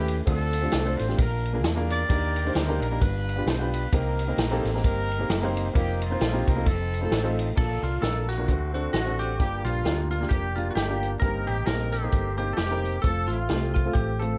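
This excerpt of uptempo gospel has a small-room sound, with a distant, roomy horn section carrying the melody in light vibrato over an intimate grand piano whose action noise can be heard. The mood is reverent and uplifting, moving at 132 BPM in 4/4 with a swung eighth-note feel in Bb major. A dark, round hollow-body electric bass sits up front beside a swinging big-band drum kit with a boomy kick, a medium-tuned snare, hi-hat, ride and crash. The chords pass through Dm7, Bb7, Ebmaj7 and G7 before settling on F7sus4 and F7. At 7.6 seconds a bright, twangy lap steel guitar, clean and compressed and played with fingerpicks, joins the horns on the melody as the harmony shifts to Bbmaj7, D7, Gm7 and Eb6/G, closing on F.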